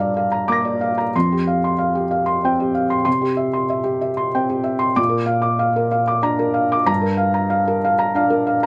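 Intimate and wistful, this short fragment of a longer neoclassical minimalist piano piece moves at 94 BPM in 3/4, played with a free, rubato feel in G dorian. A felt-muted upright piano plays solo for the whole 8.7 seconds, its soft, mellow tone sitting up front and close to the ear. The part spans a broad register, from F2 in the bass up to Bb6 at the top. The harmony starts on Gm7, moves through Fsus2, C and Bb, and settles back on Gm7 at 6.9 seconds, giving a gentle sense of return. A moderate studio reverb adds a short halo of space around the instrument.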